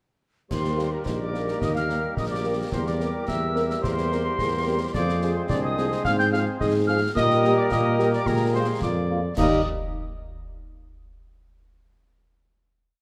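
At 0.5 s this proud, spirited military-style wind band march in 2/4 opens together: a dark, distant cornet carries the tune with an airy piccolo doubling it an octave higher, a euphonium counter-melody, clear woodwinds and warm, soft-edged trombones holding sustained chords, a punchy tuba marking the bass on the beats, and a marching snare over bass drum with bright clash cymbals, before mellow French horns join at 0.8 s with after-beat chords, all in a roomy scoring-stage reverb and closing on a final chord at 9.4 s.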